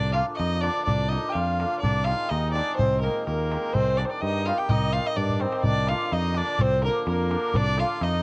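Restless and virtuosic, this short cut from a longer Balkan wedding-band tune moves at 126 BPM in 2/4 with a light swing on the sixteenths, as a reedy, gut-string fiddle carries the melody up front over a soft-attack trumpet second line and the shimmering, ringing strokes of a hammered dulcimer. A direct, amped fingered electric bass sits forward beneath them while a crisp metal-shell darbuka, played with soft hands, stays in the background and drops in a fill from 5.2 to 5.6 seconds before the opening phrase returns. The chords circle around Bb/C, Ab/C and Cm, and the fiddle, trumpet and dulcimer carry a cassette-tape grain and plate reverb in a lightly reverberant home recording.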